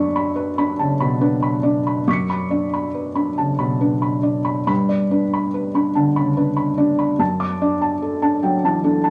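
A felt-muted upright piano opens alone and carries the whole short passage, a melancholic, intimate fragment of neoclassical minimalist piano cut from a longer piece. Its tone is soft and mellow, with the felt dulling each note, and it sits up front and close to the ear. The playing moves in an unhurried three-beat metre with a rubato feel, stretching across a range from low F#2 up to a high C#7. The harmony begins on a Bmadd9 over F#, shifts to G at 4.7 seconds, and settles on D over F# at 7.2 seconds. A moderate studio reverb gives the instrument a touch of room around its hushed, inward sound.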